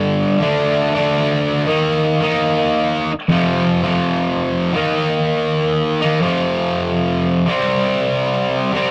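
Rowdy and energetic, this short punk fragment, cut from a longer piece, charges along at 166 BPM in a straight 4/4. A sludgy, overdriven electric guitar carries it entirely alone, picked and double-tracked and placed up front, ranging from F2 to Eb4. Its power-chord progression moves through D5, Eb5 and F5 before the second half drops into a half-time feel at 4.7 seconds, circling Eb5 and F5 and landing on C5. The sound is a rough rehearsal-room capture with tube saturation and a dark, rolled-off top end, set in a modest booth ambience that keeps the guitar close and raw.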